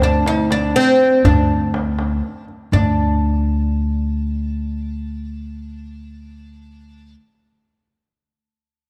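Persian modal ensemble music at 81 BPM in a straight 6/8, passionate and warm, in which a bright, fretless, plectrum-plucked oud with double strings carries the melody up front over a woody pizzicato upright bass holding D2, while a deep tombak played in a live room drops out at 3.0 s, all set in a dark production with a moderate concert-hall reverb.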